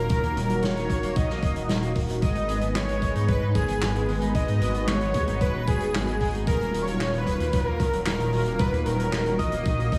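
Nostalgic and nocturnal, this synthwave passage in Eb minor moves at 113 BPM in a straight 4/4, cut from a longer piece. A smooth, evolving supersaw carries the melody through a digital delay, while an airy, dreamy lead with chorus, vibrato and delay sits higher up in the background as a mellow second line. A lush, thick pad warbles with vintage chorus and sidechain pumping beneath them, holding sustained chords that move from Ebm to Abm and then to Ebmadd9. Down low, a deep, rumbling detuned saw bass sits up front with a dark, beating tone, and a bright, overdriven garage guitar plays a double-tracked, picked riff in the background through analog chorus and delay. From 0.1 s a thumpy, tape-warm electronic kick enters together with a distant, roomy soft-mallet kit of snare, hi-hat and handclaps with a rolled-off top, all set in a light small-room reverb.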